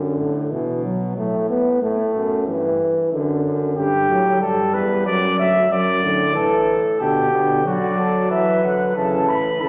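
In a straight 3/4 at 92 BPM, this lively, joyful classical canzona for brass ensemble opens with a mellow trombone and a bright bass trombone sounding together from the start. The trombone's accompaniment has a vintage colour and light vibrato and sits up front, while the bass trombone anchors the low end with its own light vibrato and a more distant, roomy placement. At 3.8 seconds a dark trumpet enters with a second line. At 7.7 seconds a cornet joins with the melody in its upper range, adding a shadowy, vibrato-touched voice. The harmony moves between D, G and A colourings, including D/F#, Asus2 and G/B, and a wet scoring-stage reverb with a 1.7-second decay surrounds the ensemble in this short excerpt cut from a longer piece.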